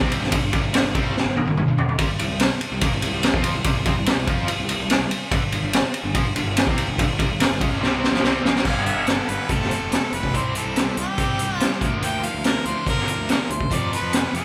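Swaggering and confident, this classic rock cut moves with a straight 4/4 drive and a live, one-room feel under light reverb. The raw garage drum kit sits up front with a boomy kick, a high-tuned snare, a gritty, saturated character and a rolled-off top, and it rolls through fills at 1.2 and 7.8 seconds. Behind it, a bright distorted electric guitar and an overdriven semi-hollow guitar with tremolo play the riff, while a dark, round fuzz bass fingered with overdrive gives a punchy low end. The harmony moves from G5 and C5 power chords to a fuller progression of G, F, C and Bb/D in the second section. At 8.6 seconds a clear harmonica takes the solo melody, its light vibrato and scooped notes riding over the band with a smooth top.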